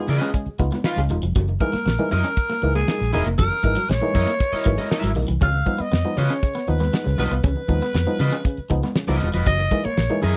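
A raspy, growling alto saxophone leads this hypnotic, sly funk excerpt over a dry 1970s-style groove of fat-snared, damped drums, a dark, foam-muted fingered bass, stringy muted clav stabs, a slightly broken-up guitar with analog chorus, a clean, compressed guitar riff and ringing congas in the background, moving between C#9 and F#13 chords.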